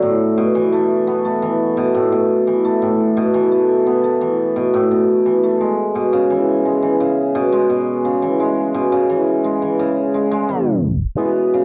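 A solo cimbalom carries this short folktronica excerpt, its hammered strings shimmering and ringing up front in the mix from 0.0 to 11.6 seconds. The mood is wistful and autumnal, set at 86 BPM in a straight 4/4. The acoustic instrument sits in its lower register, between A2 and B3, and its tone is warm. A moderate small-room reverb gives the strings a close, intimate space. The harmony moves from Esus4 to C#m7 at 5.6 seconds, and a tape stop from 10.5 to 11.2 seconds brings this fragment of a longer piece to an abrupt halt.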